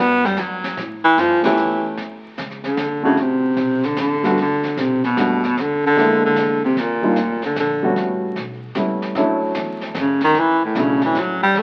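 The sound is that of a very old 78 rpm record, crackling and dull at the top, with a moderate reverb from a large studio room. This is a warm, swinging jazz waltz for a small group, cut from a longer piece, moving at 150 BPM in 3/4 in D major on swung eighth notes. A close-miked baritone saxophone carries the melody up front with subtone and vibrato, taking a solo from 2.0 seconds. A natural-sounding baby grand piano with short sustain, also forward, enters at 1.4 seconds on a band accent and plays accompaniment. In the background, a woody, thumpy upright bass is plucked on gut strings, while a vintage drum kit played with brushes sits mid-forward, adding a high-tuned snare, a punchy kick, hi-hat and dark ride cymbal. The harmony moves through chords such as Dmaj7, Gmaj7, E7#11 and Ebmaj7 before settling on Dmaj9, while the saxophone pauses briefly and returns at 10.0 seconds.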